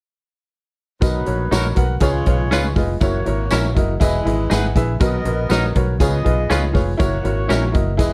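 A punchy, foam-muted fingered electric bass sits up front in this danceable uptempo 1960s-style soul excerpt at 120 BPM in B major, alongside a clear, intimate grand piano with audible action noise, a swinging big-band drum kit with a punchy kick and medium-tuned snare in a big room, and a jingly tambourine set back in the background. A horn section with light vibrato carries a second line, while a bright, clean semi-hollow electric guitar adds compressed, picked stabs with harmonic tremolo from 1.5 to 7.6 seconds. The chords move through Bmaj7, C#7, F#7 and Emaj7 under studio reverb and a dark, warm production.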